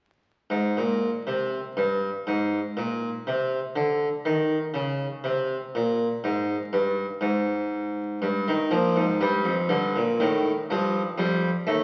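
Stately and elegant, this baroque-style four-part fugue for solo harpsichord is a short excerpt from a longer piece, moving at a measured 60 BPM in 4/4 with a straight feel. The harpsichord enters at 0.5 s and plays alone through to 11.8 s, staying in a low register between Eb2 and A3. Its Flemish-style tone is airy and plucked yet full, with two sets of strings giving the sound body, and it sits up front in the mix. The opening stretch is unharmonized before settling onto Eb/G at 8.2 s and moving to F7 at 10.2 s. A lingering recital-hall reverb surrounds the instrument, while the sound of a very old 78 rpm record adds vinyl crackle and a dulled top end.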